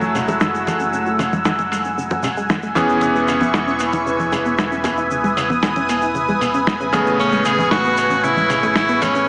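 A straight 4/4 groove at 115 BPM drives this groovy, feel-good nu-disco excerpt in E major, where a gritty, sampler-style drum kit with low-pass filtered hi-hat and snare sits alongside bright, close congas and tube shaker, a round, envelope-filtered fingered electric bass tucked in the background, a clangy vintage electric grand piano through analog delay, a thick, detuned sawtooth pad up front with chorus and phaser, and a punchy unison pluck arpeggio carrying tape echo and a filter sweep, moving over F#m9, E6 and Amaj9 until an edgy tenor saxophone with light vibrato enters at 7.2 s, the mix bathed in a wet echo chamber and squeezed into a heavily compressed, small-speaker radio sound.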